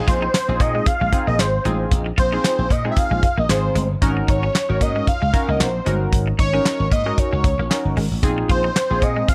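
A glossy, detuned polysynth with chorus opens this danceable early-eighties boogie funk excerpt at 0.0 s, joined almost at once by a fat, sawtooth analog lead with vibrato and a sub octave up front, a punchy, bright slap bass, a damped 70s kit of tight kick, hefty snare, hi-hat and handclaps, and a clean, picked electric guitar riff set in the background with subtle chorus, the groove carrying a sixteenth-note swing in a dry, close sound as the harmony moves from Bb9sus4 to Ab9sus4 at 4.0 s and back at 8.2 s.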